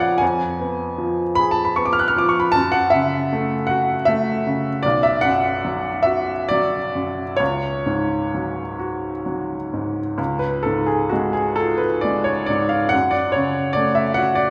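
An upright piano opens on a C#7/E# chord, setting a mournful, wistful tone for this romantic classical nocturne, cut from a longer piece. The pulse moves slowly in 12/8 at roughly 43-53 BPM counted in dotted quarters, stretched and pulled by a free rubato feel. The lone piano spans from B1 up to F#6 across the full 14.5 seconds, its tone clear and woody with long sustain, sitting up front and intimate enough that the noise of its action can be heard. The harmony drifts from F# minor to B minor, then to a suspended C# at 7.4 seconds that resolves to C# major before settling back on F# minor near 12.9 seconds. A generous reverb with a 1.7-second decay surrounds the polished playing with the resonant air of a church or concert hall.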